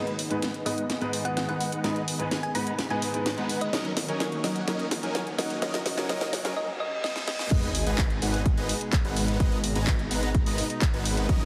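The sound is heavily compressed and radio-like, thinned by a high-pass filter and set in a moderate, lush hall reverb. This is festival progressive house in G# minor at 127 BPM: an emotional, powerful cut from a longer piece. It opens as a build-up, with huge detuned supersaw chords under a filter sweep and a bright unison pad in the background carrying vintage 12-bit sampler grit, both pumping with sidechain. A clear grand piano plays accompaniment from 0.3 seconds, and a round, tine-like FM pluck with a dark, chorused edge carries the melody above it. A house kit with a cracking snare, handclaps, hi-hat and crash sits up front and plays drum fills, while very quiet risers, a reverse cymbal and a sub drop add sound effects. At 7.5 seconds the drop lands with an impact, a punchy electronic kick and a thick, saturated detuned saw bass, as the chords return from D#m7 and F# to G#m.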